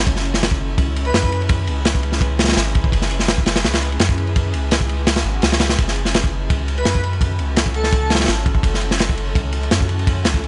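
Nostalgic and raw, this drum and bass excerpt at 168 BPM in F# minor rides a crunchy, saturated breakbeat kit with dark cymbals up front over a round, deep dub sub bass and a blurred granular pad carrying 12-bit sampler grit. It moves from C#m7/F# to F#m7 at 5.8 seconds, while an airy sine lead with chorus and dub echo drifts in briefly at 1.1 and 6.8 seconds and a very quiet electronic swell passes at 5.2 seconds.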